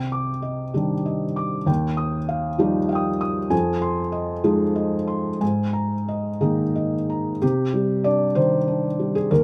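Neoclassical minimalist piano in C minor, wistful and melancholic, where a felt-muted upright plays solo in a rubato 6/8 at about 59-66 BPM, its soft, mellow, intimate tone sitting up front with audible action noise and light reverb as it moves through Cmadd9, Ebadd9, Fm7 and Absus2 before a new section returns to Cmadd9 at 7.4 seconds in this brief cut from a longer piece.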